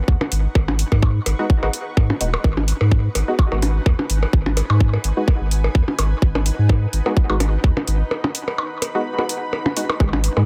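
Hypnotic and clinical, this short cut from a longer minimal techno track in G# minor moves at 127 BPM in 4/4 with a light swing on the 16ths, resting on a single G#m7 chord. A cloudy, evolving granular pad fades in from the start and hangs softly behind everything, blurred by its own reverb and gently pumping. Underneath, a deep, thick saturated sub bass sits up front with a pumping pulse, while a tight, layered electronic kick drives the groove alongside metallic, tape-warm hi-hats and small-room percussion blips trailed by dub echo. From about 1.4 seconds, a muted, detuned dub chord stab adds short, filtered hits coloured by chorus, cassette-tape grain and echo. A break arrives at 8.1 seconds, and at 10.0 seconds a bright, squelchy resonant pluck on G#3 briefly surfaces, shimmering with phaser and ensemble chorus, in an echo-heavy mix that stays dry of room reverb.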